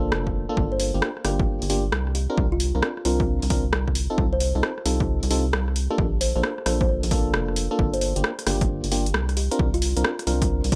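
Moody and skippy, this swung two-step garage excerpt sets glassy, bell-like FM electric piano stabs with chorus and tape echo over a rubbery, hollow square-wave bass that sits dark and up front through a Bbmaj7, Gm7, C9sus4 and F7/C progression. A punchy, tape-warm analog drum machine supplies hi-hat and rim click from a small room, joined by an electronic kick drum that drops out between 7.3 and 7.8 seconds. In the background, a woody, mellow kalimba plucks a soft melody through tape echo, all wrapped in digital ambience.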